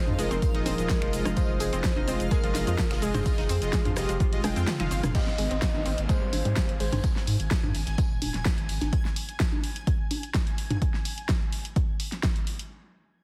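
A punchy, layered electronic kick drives a straight pulse through this uplifting, euphoric progressive house excerpt. The kick is joined by a deep house kit with a fat snare, hi-hat, shaker, finger snaps, toms and crash, an analog drum machine adding congas, rim click and toms, and a very quiet acoustic rock kit contributing hi-hat, snare and tambourine. The piece opens on a drop in which a saturated sine sub bass, a lush, warbling unison pad and smooth supersaw stabs support a dark, round, octave-layered lead melody with vibrato, all breathing with sidechain pumping. A bright, detuned analog pluck plays arpeggios in the background, and a reversed, dreamy granular texture hovers high above. During a drum fill, the kick drops out at 4.7 seconds, and at 5.1 seconds the harmony moves to a new section where a downlifter sinks in the background and a filter sweep runs over the pluck until 7.0 seconds. 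The mix sits in light digital ambience with a heavily compressed, radio-like sheen.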